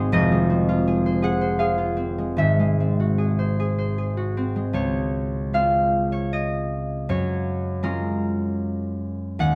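A bright, ringing concert harp plays alone in this graceful, dreamy classical excerpt in Db major, moving with rubato in 3/4 at roughly 70-84 BPM and tuned to A4 = 435 Hz, its fingerpicked chords drifting from Fm7 through Abaug7 to Dbmaj7 and Gbmaj9 across a range from F1 to Eb6, with the harp up front yet heard from further back in a stone room with moderate reverb.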